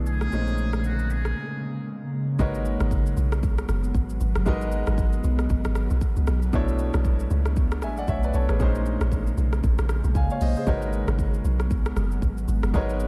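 Swung sixteenths at 116 BPM drive this hypnotic, soulful amapiano excerpt, where an electronic deep house kit of kick, dark hi-hats, rim click and shaker sits up front beside a brilliant concert grand piano and an ethereal, chorused, sidechain-pumped pad, while a thick saturated sub bass and a distant, buzzy muted trumpet with delay open the piece before a break at 1.4 s gives way to a drop at 2.4 s, where a round, percussive log drum bass enters under minor eleventh chords in a dreamy mix soaked in hall reverb.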